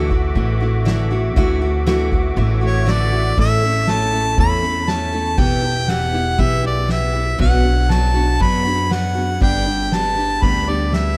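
A straight 4/4 groove at 119 BPM carries this peaceful, pastoral acoustic folk excerpt in A mixolydian, where an up-front, clear harmonica with light vibrato and tape echo takes the melody from 2.7 seconds over a bright picked steel-string guitar, a woody, thumpy pizzicato upright bass and a soft-mallet drum kit with dark cymbals in the background, while a shimmering, reedy musette accordion holds chords until 3.3 seconds and a very quiet, nasal resonator slide guitar sounds only briefly at the start, all captured close and dry as the chords move from Dadd9 through A, Em and Bm to G.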